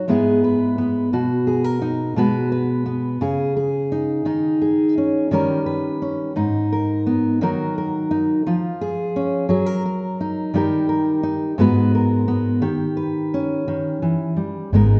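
Set in a church or concert hall with a long, wet reverb, this reflective, melancholic folk-pop ballad in a gently swaying 6/8 is carried by an up-front, full-bodied fingerpicked dreadnought steel-string guitar, its dark tone touched with audible finger squeak. The guitar moves through shadowy, moody chords such as Bmaj7, C#sus2, D#7sus4 and G#madd9 before settling on D#7. At 14.7 s a vintage foam-muted electric bass enters with a round, punchy note just as the cut-off passage ends at 15.0 s.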